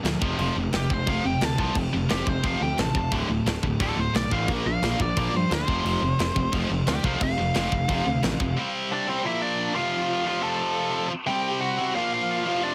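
A rowdy, rebellious punk rock fragment at 176 BPM opens with two bright, tightly picked distorted guitar riffs, one up front and one in the background, over a growly, fuzzed-out picked bass and a tight, up-front drum kit of crash, kick and snare. A biting overdriven lead guitar with delay joins at 0.8 seconds for a solo, and the bass and drums drop out at 8.5 seconds, leaving the front riff guitar and the lead to carry the rest through 12.7 seconds in a dry, heavily compressed, radio-like mix.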